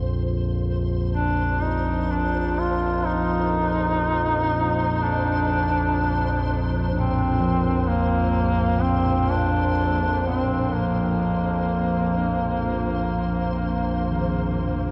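Desolate and dark, this free-floating ambient piece, cut from a longer work, rests on a warbling, vintage analog drone held up front with chorus, while a flickering, grainy granular texture gradually fades in high above it. At 1.1 seconds a clear duduk enters as the solo voice, its folk-style melody marked by vibrato and scooped notes and trailed by delay. From 6.9 seconds a metallic bronze singing bowl rings in the background with slow beating and delayed arpeggios, all suspended in a vast, echoing space with a huge, wet reverb.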